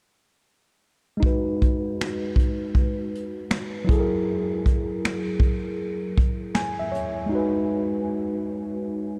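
Hazy and nostalgic, this lo-fi hip hop excerpt sets a worn, slightly out-of-tune tine electric piano, given a cassette tape tone, a filter sweep and a fill around 6.2 seconds, against a vintage brush drum kit of finger snaps, hi-hat, punchy kick and medium-tuned snare with a rolled-off top that drops out at 7.2 seconds, all soaked in a huge dreamy reverb over a swung groove.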